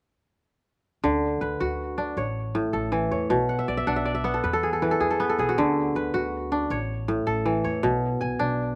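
Hypnotic and warm, this short cut from a longer piece of West African string music in 12/8 sets a crisp, ringing, fingerpicked kora up front playing arpeggios from 1.0 to 8.8 seconds, with a kora fill between 3.5 and 5.6 seconds, over a quieter, woody pizzicato upright bass, all captured dry in an open outdoor setting.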